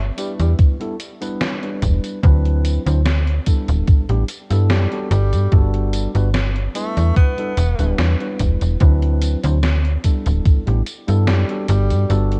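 Heard through a dry cassette-tape sound, this nostalgic, woozy vaporwave fragment drifts at 73 BPM with a light sixteenth-note swing, as a breathy, scooped tenor saxophone with vibrato sings a jazz-style solo through tape echo over an up-front, snappy FM slap bass with a metallic attack, a clean tine electric piano through a combo amp with subtle chorus and analog delay, a thumpy electronic kick, and a tape-warmed 80s drum machine whose hi-hat, tambourine and gated-reverb snare ring in a large room, all cycling through Em7, D13, A9sus4 and Gmaj9.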